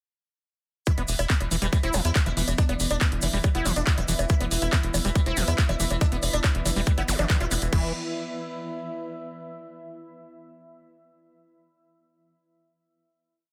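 An overdriven, up-front electronic kick drives this intense, psychedelic trance piece, entering at 0.9 s together with a buzzing, shimmering sitar riff with phaser and dub echo, a squelchy distorted acid bass, a bright-hatted drum kit with bongos, claps and crash, and a grainy tube shaker, with a punchy rolling sequencer bass following at 1.0 s. A swarming detuned drone and a deep, moody ambient pad with chorus fill in beneath, a brief zap marks 7.1 s, and the pad carries the final chord to 9.4 s, outlasting the other parts.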